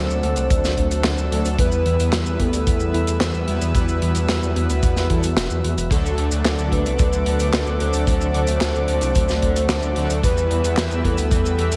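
Cinematic and driving, this synthwave excerpt pairs a soft, round octave-layered synth lead, carrying the melody through chorus, tremolo and a cassette-tape echo, with a shimmering chorused pulse-width pad whose sustained chords pump against the sidechain. Beneath them sit a thick, saturated detuned saw bass up front, bold, brassy analog synth stabs, and a tine-like thumb-piano-style pluck playing dark arpeggios in the background until 5.8 seconds. A mid-forward acoustic kit of snare, hi-hat, shaker and handclaps, bathed in gated reverb, joins a punchy kick to keep a straight pulse over the D and E minor chords, while a bright overdriven electric guitar riff enters quietly at 5.9 seconds, all within a light small-room ambience.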